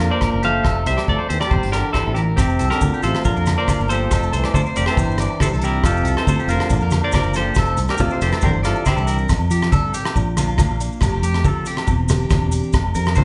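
Sunny highlife guitar band in F major at 139 BPM, where a bright, clean semi-hollow electric guitar carries the melody over a brilliant, punchy trombone second line until 9.2 s, with twangy, slightly broken-up electric guitar arpeggios, a full-bodied jumbo steel-string acoustic with finger squeak, round fingered bass, a cloth-damped thuddy kit and ringing agogo bells, joined at 2.4 s by low-tuned congas and grainy maracas, before a clean electric guitar solo takes over at 9.3 s in this live-room excerpt.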